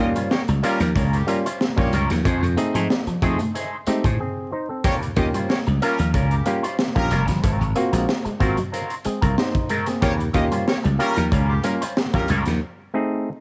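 A growly, punchy slap bass anchors this sly funk excerpt at 93 BPM, over a gritty, saturated breakbeat kit with a high-tuned snare and rolled-off top that enters at 0.2 s. An up-front auto-wah clav plays stringy stabs while a twangy envelope-filtered electric guitar adds wah accompaniment, a clean guitar picks a riff in the background, and a clear horn section with light vibrato carries a smooth second line over Eb9, F7#9 and Ab13 chords. Brief breaks at 4.2 s and 12.6 s punctuate the groove, and light reverb and vinyl crackle color the sound.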